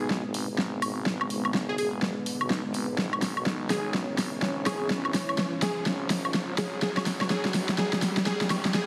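An overdriven big-room dance drum kit sits up front with a huge snare, hi-hat and woodblock, driving a swaggering, bouncy bass house build-up in G# minor at 125 BPM with a swung 16th feel, filled with a drum fill throughout this short cut from a longer piece. A punchy, catchy detuned unison lead on G#4 shimmers through phaser and dub echo over a dark, evolving analog pad with chorus, while a thick, growling FM bass with overdrive and a high-pass filter holds the low end on a G# minor chord. A riser plays in the background across the full 8.9 seconds, all framed by a moderate room reverb and a heavily compressed radio sound.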